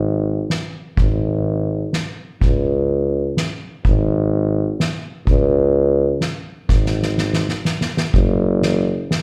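A mellow, soft-attack tuba carries the bass in a classical style alongside a soft-mallet drum kit with a punchy kick, fat snare and dark cymbals in this jolly, bouncy alpine dance-band snippet at 126 BPM in 3/4. Cut from a longer piece, it is a live gig heard through the venue's PA with light club reverb, where both parts sit up front and an airy drum fill at 6.7 seconds leads into a new section at 8.1 seconds.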